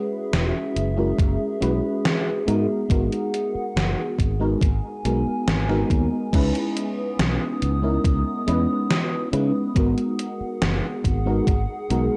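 In a straight, unhurried 4/4 pulse, a gated 80s drum machine with hi-hat, snare and crash sits up front with its gated-reverb snare, joined at 1.2 s by a thumpy electronic kick, in this hazy, woozy vaporwave fragment cut from a longer piece. A round, vintage FM electric piano with chorus and analog delay carries the chords beside a detuned, nostalgic tape-like pad that warbles under its reverb, while a bright, growly fingered electric bass with tube saturation anchors the low end. The harmony drifts from a suspended ninth chord through minor sevenths and a minor ninth, and the whole mix has the dry, gritty grain of a cassette recording.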